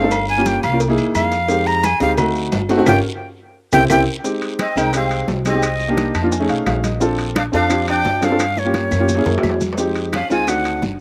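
A straight 4/4 groove at 174 BPM drives this sultry, sophisticated Afro-Cuban jazz excerpt in F minor, where a breathy, chiffy jazz flute with slapback echo carries the melody over a boxy, up-front upright piano and thumpy pizzicato upright bass, surrounded by hard-hand congas, soft bongos and cowbell, ringing agogo bells and timbales, woody claves, raspy guiro and grainy maracas, with a buzzing, shimmering sitar adding a second line from 4.6 seconds, a band accent and drum fill closing the opening flute solo near 4.2 seconds, and a piano fill arriving at 6.0 seconds.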